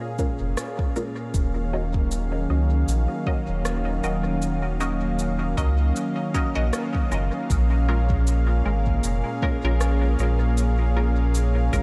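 A round, sine-toned sub bass sits up front from 0.4 s beneath a smooth, detuned sawtooth pad of sustained chords with chorus, while bright, wave-folded chord stabs with phaser and dub echo pass through a filter sweep until 7.5 s, and a deep electronic kick and a dub-echoed cabasa and rim click, both re-recorded in a large room, carry this meditative ambient dub excerpt over a lightly swung 4/4 groove in light reverb.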